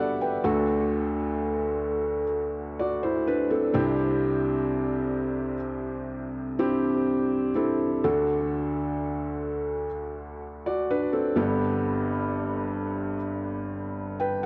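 Hopeful and heartfelt, this slow pop excerpt at 63 BPM in D mixolydian features a lone felt-muted upright piano, soft, mellow and intimate with a thin, vintage felt tone sitting up front, colored by cassette tape and analog delay in a small, reverberant home room, opening with a brief fill before moving through D, Cadd9, D and Gadd9.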